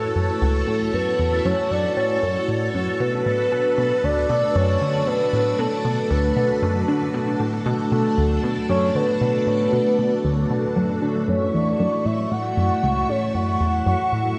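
Awash in a wet spring reverb and heavy echo, this excerpt of expansive, hypnotic sequencer-driven space music in B minor at 116 BPM sets a soft, round octave-layered synth lead with chorus, tremolo and delay over lush, vintage string-machine chords, a tight, driving sawtooth sequenced riff with phaser, and a bright, bubbling stepped-filter texture, moving from F#m7 to Bm7 at 3.0 seconds and back at 11.3 seconds.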